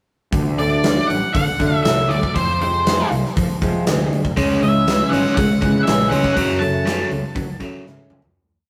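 A big rock drum kit drives a straight 4/4 groove at 120 BPM, its tight kick and medium-tuned snare sitting up front in a natural, roomy sound. This short, whole piece of dark, angsty, quiet-loud alternative rock unfolds as a pre-chorus moving through D, Fm, C#m and F#m. A punchy fuzz bass plays a syncopated riff with overdrive, while an old ladder-braced acoustic guitar picks boxy, short syncopated chords in arpeggios. Above them, an octave-fuzz lead guitar carries a distorted, motif-based melody with digital delay. At 4.4 seconds a biting overdriven guitar joins with bright, palm-muted eighth notes and spring reverb. The rough rehearsal-room recording fades out from 6.4 seconds, and a drum fill arrives at 7.9 seconds.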